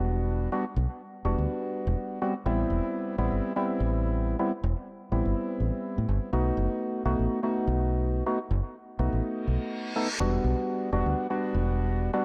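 Hollow, percussive organ stabs with subtle chorus and analog delay open this hypnotic deep house excerpt at 124 BPM in E minor, alongside a warm, foam-muted, up-front fingered electric bass, moving through Em9, Am9 and B7 with 56% swing on the 16ths under light digital ambience, before an electronic reverse cymbal appears at 9.6 s, just ahead of the return to Em9 at 10.2 s.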